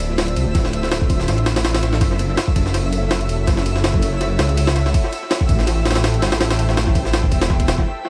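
A swung, gritty jungle break of thumpy kick, high-tuned snare and ride, overdriven with analog delay, drives this dark, atmospheric drum and bass fragment, as a thick, beating detuned saw bass sits menacingly up front beneath an ethereal, phased pad and a sparkling granular shimmer in the background, all over Dm7, F#m7 and Am7 chords in an echo-heavy mix flecked with vinyl crackle.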